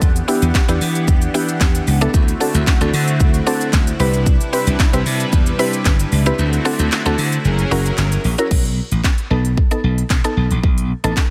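A confident, driving dance-pop excerpt at 113 BPM opens with a smooth, detuned supersaw holding lush chorused chords over a bright, punchy slap bass and an up-front house kit of kick, cracking snare, crisp hats, shaker, handclaps and crash, with the supersaw and bass pumping to the sidechain. From 0.3 s a woody, round, mallet-like FM pluck adds percussive accompaniment, while the chords move from Em7 through D7 and Cmaj7 to F#7. The kick drops out at 6.4 s and returns at 8.5 s, when the supersaw stops and the harmony lands on B7, leaving bass, drums and pluck in a light reverb.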